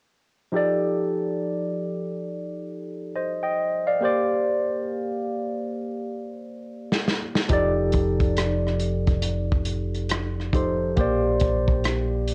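Sensual and smooth, this slow neo-soul R&B excerpt at 69 BPM sways with a swung sixteenth-note feel as a bright, barky tine electric piano, clean through a combo amp with phaser and plate reverb, voices F13 and Bb69 chords up front from 0.5 seconds. A crunchy breakbeat kit enters at 6.9 seconds in the midst of a drum fill, bringing hi-hat, tight kick, rim click and medium-tuned snare, saturated and gritty with a rolled-off top and cassette tape character. At 7.5 seconds a deep, dark, round and punchy fingered dub bass joins, all within the moderate booth ambience of a home cassette recording.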